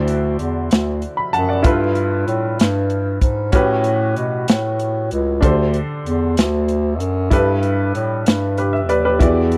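A bright, worn baby grand piano with audible action noise and a warm, vibrato-laden bass clarinet open this reverent, jubilant slow gospel passage in 6/8, joined at 0.1 seconds by an airy big-band drum kit with a punchy kick, hi-hat and snare, captured in a dry, close 1970s-style studio sound as the chords move from D9 through G13 and A13 to G69.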